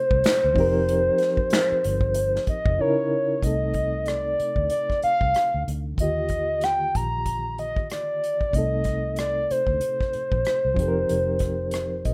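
A hollow, woody synth lead with a clarinet-like voice, chorus and slapback echo carries a soulful, introspective neo-soul melody at 94 BPM in C dorian, over fast-tremolo reedy electric piano, a dark, foam-muted vintage bass and an up-front acoustic kit of snaps, rim clicks and punchy kick, with a silent gap at 2.8 seconds and a short electric piano fill closing this rough, lightly reverberant home-demo excerpt at 11.7 seconds.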